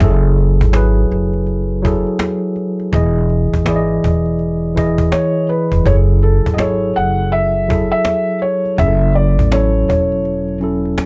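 Lo-fi hip hop at 82 BPM with a swung 16th feel, hazy and reflective in F# dorian, moving from F#m9 to Emaj7 and back before settling on F#m7. A mellow tine electric piano, coloured by cassette tape, a low-pass filter and plate reverb, carries the chords over a woody, thumpy pizzicato upright bass on gut strings and a snappy cajon struck with hard hands. At 5.1 seconds a felt-muted upright piano enters with a soft, intimate melody, its thick felt and audible action noise shaded by its own low-pass filter and plate reverb, and a break arrives at 10.2 seconds in this cut from a longer piece.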